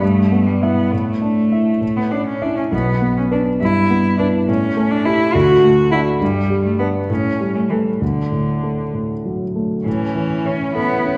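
A wet recital hall reverb surrounds this short excerpt of a quick, spirited classical-period movement for piano trio in D major, in 6/8 at 65-70 dotted-quarter beats per minute with rubato. An intimate grand piano with audible action noise carries the accompaniment up front, while a rich, intense bowed cello with vibrato and a smooth top sings the second line beside it as the harmony moves through Em/G, A7, D and G. At 9.9 s a focused, quieter solo violin with vibrato enters with the melody and plays with the others until the cut at 11.2 s.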